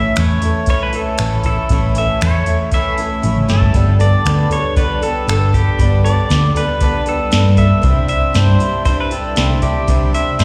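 A straight, steady 4/4 pulse comes from a soft vintage rhythm box, entering at 0.2 s with a deep kick, crisp snare, metallic hats, finger snaps and toms, and a drum fill at 3.2 s. Beneath it, a dark, round hollow-body bass sits up front while a shimmering, octave-doubled twelve-string acoustic jangles through A, Gadd9 and Cadd9 chords, and a clean, scooped electric guitar plays a twangy riff through phaser and slapback echo. On top, a bright, compressed pedal steel carries the hopeful melody with fingerpicked slide lines and volume swells, dressed in plate reverb, slapback and digital delay, in this folk rock and heartland rock clip heard as a live gig through the venue's PA with recital hall reverb.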